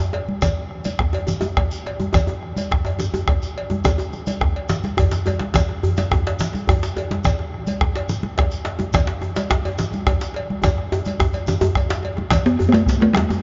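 A short cut from a West African drum ensemble in a straight 12/8 opens with a metallic, vintage-toned cowbell and a tight, cracking djembe with metal rattles, joined within moments by high-tuned, thick-skinned congas, a deep, dark bombo up front, a grainy shekere set at a distance, and a second djembe played with soft hands up front. The mood is earthy and powerful, with drum fills at 5.0 and 10.6 seconds, all ringing through a vast, echoing cathedral space with a dulled top end. At 12.5 seconds a resonant talking drum, close and dry, steps forward to carry a brief melody.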